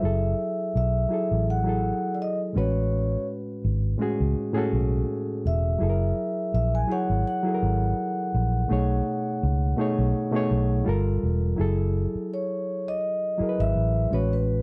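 From the first moment, a vibraphone played with soft mallets carries a mellow, ringing melody with a slapback echo over a reedy, bright electric piano and a dark, foam-muted fingered bass, in a sultry, late-night neo-soul R&B excerpt at 83 BPM with a light sixteenth-note swing in F# dorian, moving through lush chords from F#m9 to a shift at 11.6 seconds, all captured in a dry, close 1970s-style studio sound.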